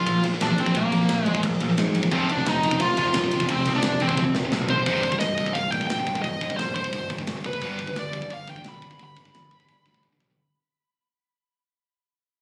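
A relentless, epic heavy metal cut in C minor at 175 BPM opens with an up-front, high-gain lead guitar melody soaked in tape echo, riding over a bright high-gain rhythm guitar, a dark, sludgy overdriven guitar and a growly, punchy picked bass in the background, while a tight, gritty drum kit in a big room drives the straight 4/4 pulse with fills at 4.2 and 10.0 seconds, the whole phone-captured club sound fading out from 4.9 seconds as the harmony moves from Cm to G.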